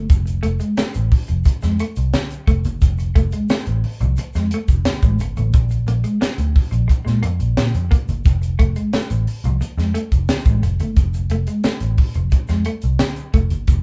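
Funk at 88 BPM in a straight 4/4, this short cut from a longer piece has a strutting, funky mood, with the band playing live together in a small room that adds a moderate reverb. A crisp fusion drum kit sits up front, its high-tuned snare, punchy kick and hi-hat sounding airy and polished. The vintage muted picked bass is also up front, dark, round and foam-muted with an amped punch, moving between F1 and Bb2. A clean electric guitar plays a picked riff between F3 and Bb3, its warm tone treated with tremolo, until 13.5 seconds. Low-tuned, thick-skinned congas sit in the background, and a very quiet tube shaker adds a grainy, bright, saturated edge, while the harmony moves from F to Bb5 at 5.5 seconds and back to F at 8.3 seconds.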